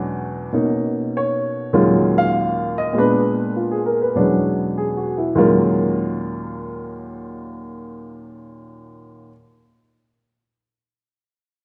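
Jazz in Eb minor at a swinging 99 BPM, this late-night excerpt features a warm, up-front baby grand piano playing solo for its full 9.3 seconds, spanning Eb2 to F5 with a natural, short-sustained tone through chords like E13, Bmaj9, Ebm11 and Bb7b9, set in a wet recital hall reverb that suggests a church or concert hall.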